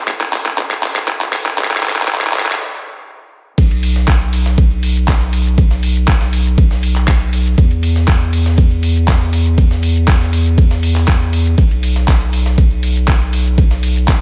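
This progressive house passage, lifted from a longer piece, opens at 0.1 s with a knocking, overdriven electronic kick placed up front, layered with a pop drum kit of crash cymbal, handclaps, shaker and warm hi-hats, both carrying the boxy character of a small room. At a straight 120 BPM in 4/4, the opening is a build-up built on a drum fill, which breaks into a brief stop at 2.6 s. The drop lands at 3.6 s, bringing in a round, deep analog bass that moves between B1 and E2 with a fast attack, sustained, dark tone and sidechain pumping. A gritty, compressed sampler-style kit sits in the background at the same moment, adding a ride cymbal and a medium-tuned snare. Light digital reverb gives the expansive, dreamy mood an airy sheen.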